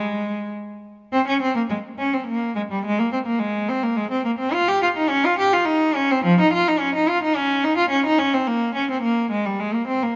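In a flowing 3/4 with rubato, this solemn fragment of a baroque-style suite movement features a lone, period-style cello, up front and bowed with an airy, reedy gut-string tone, set in the moderate reverb of a scoring stage.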